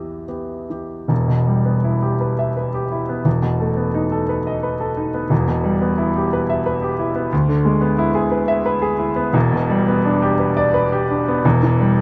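A clear, intimate grand piano sits up front, its polished tone carrying audible action noise as it plays alone across a span from E1 to E5 in this romantic classical character piece. Moving in 3/4 at 70-90 BPM with a rubato feel, the fragment from a longer work stays in E minor, passing through Em, B7/E, E7/D and Em7 before settling on a rootless A7/E near 11.4 seconds. Light reverb and a dark production lend the music a warm, hopeful mood.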